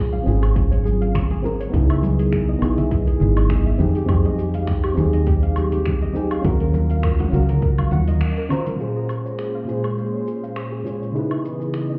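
Heard muffled as if through a wall, with club reverb and a digital ambience, this relaxed, smooth sunset chillout excerpt sets a dark, round FM electric piano up front, sprinkled with a gentle pluck playing arpeggios, over a bright, foam-muted fingered electric bass, thin-skinned congas in the background, and an overdriven deep kick with a deep house kit of metallic hats, finger snaps, shaker and woodblock. Chorus, delay and shimmer reverb trail the piano and pluck through lightly swung minor-ninth chords. The kick drops out at 7.8 seconds, and after a band accent and break at 8.2 seconds the bass and congas fall away and a lush, warbling, detuned unison pad enters at 8.8 seconds to hold sustained chords alongside the piano, pluck and kit.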